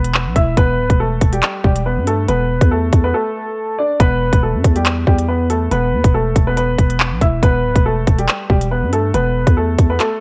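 A clear, woody upright piano carries the melody up front, slightly detuned and softened by a low-pass filter, its long sustain giving this ominous, cold drill excerpt a haunted edge. Beneath it, a growling, buzzy 808-style bass with a fast attack and decaying tail sits alongside an electronic drum kit of hard-clipped kick, crisp hi-hats and handclaps in a half-time feel, all three parts running throughout with a brief break at 3.1 seconds. The whole recording sits in a digital ambience with a worn, warbling cassette-tape drift to its pitch.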